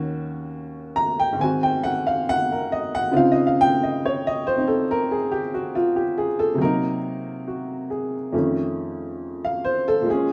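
A wet studio reverb with a decay of 0.8 seconds surrounds a lone upright piano that sits up front in the sound, its tone woody and boxy with short sustain. This is a solo jazz piece, taken from a longer performance, at a relaxed 69 BPM in 4/4 with a swung eighth-note feel. The piano carries everything on its own for the full 10.3 seconds, ranging from Eb2 up to Bb5. Its harmony moves from Ebm7 to Ab7 and settles on a lush Dbmaj9 at 3.1 seconds, then turns through Cm7b5 to a darker F7b13. The mood is sophisticated and warm.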